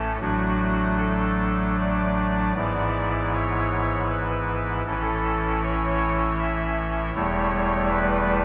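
A soft-reed pipe organ plays alone and up front on an oboe solo stop with baroque voicing and tremulant, spanning E1 to E5 in a majestic yet serene classical chorale-style passage with a flexible, rubato lilt in triple metre, moving through D/A, E7/G#, A and A7/E across this 8.4-second portion of a longer piece, set in a wet stone room.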